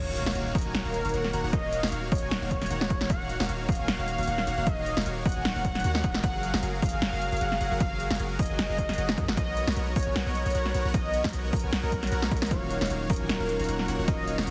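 Lush and emotional, this future bass excerpt moves with a half-time feel and a light swing, cut from a longer piece. A quiet electronic impact opens the track as a velvety, smooth synth lead carries the melody through chorus and digital delay, pumping under sidechain alongside huge, detuned supersaw chords. Beneath them, a deep, mellow 808-style bass holds long sustained notes over a progression that moves from Ebm7 through Gbmaj7 and Bmaj7 before returning to Ebm7. The drums are overdriven and punchy, with a layered electronic kick joining at 0.6 seconds and a big-room kit of crisp hats, ride cymbal and snare, re-recorded in a large room, adding a fill at 12.3 seconds. A bell-like, clean tine electric piano enters at 12.5 seconds, and the whole mix carries light reverb and a heavily compressed, radio-like sound.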